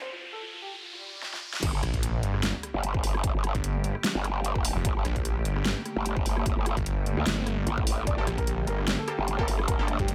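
Menacing and heavy, this heavy wobble dubstep excerpt runs at 149 BPM in G minor with a swung, half-time feel. It opens on a brief break where a dark, mellow concert grand piano with a boxy tone carries the melody alongside an electronic riser and swell, and a drum fill from the dubstep kit arrives at 1.2 seconds. The drop lands at 1.6 seconds on a Gmadd9 chord with an impact and sub drop. A punchy, layered electronic kick re-recorded in a large room enters there with a growling, wobbling bass that is formant-filtered, chorused and overdriven, soon joined by a snarling sawtooth bass, detuned and distorted with a moving notch. The overdriven kit sits up front with a huge snare, crash, hi-hat and rim clicks, while an evolving wavetable pad, morphing with ring modulation, phaser, ensemble chorus and sidechain pumping, glows in the background from 2.1 seconds. Near the end the piano returns with a bold, bright orchestra-hit-like synth stab bathed in reverb, all set in a high-passed digital ambience.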